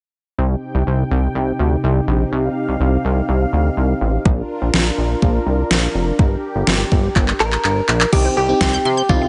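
A glossy, chorused synth bass drives this melancholic, nocturnal synth-pop fragment from 0.4 seconds beneath a brassy, airy analog pad, before an overdriven pop drum kit with a knocking kick and deep snare arrives at 4.3 seconds; near the close, a bright, clean electric guitar melody with lush chorus and digital delay enters, soon joined by a glassy FM electric piano and squelchy resonant blip-pluck arpeggios with phaser.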